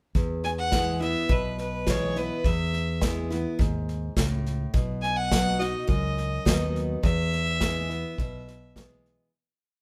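A clear, earthy fiddle leads this short, complete honky-tonk and classic country piece, entering at 0.4 seconds with bluesy licks, light vibrato and a close, up-front bowed sound from a single player. The mood is heartfelt and sunny, moving at 104 BPM in a straight 4/4 in E major, with the harmony shifting from E to B and back to E at 7.0 seconds. A full-bodied dreadnought acoustic guitar sits up front, alternating bass notes and strums with bass runs, and a touch of finger squeak. An acoustic drum kit played with bundle sticks drives a polished train beat, with a punchy kick, a medium-tuned snare and hi-hat in an airy small-room sound. Fingered electric bass adds a round, direct two-beat root-and-fifth line with walk-ups. Moderate studio reverb frames the single verse, which fades out from 7.0 seconds to the close.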